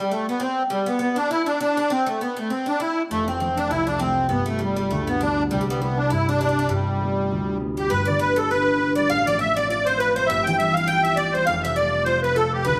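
This bright, cheerful Celtic reel opens with musette accordion, Irish bouzouki and concert harp sounding together from the first beat. It moves at 200 BPM in 4/4, with a light swing on the eighth notes, in G mixolydian tuned slightly low to A4 = 438 Hz. The accordion carries the melody up front, its reedy musette tuning giving it a shimmering, mid-forward voice. Beneath it the bouzouki plays a picked second line whose double strings lend a metallic edge, while the warm, fingerpicked harp supplies a ringing accompaniment that reaches down into deep bass and also sits up front. The first strain moves through F, Gadd9 and C, and a second strain begins at 7.9 seconds on G, F/A, Dm11/G and F before the clip, cut from a longer piece, ends at 12.8 seconds, heard through close, detailed microphones within a moderate recital hall reverb.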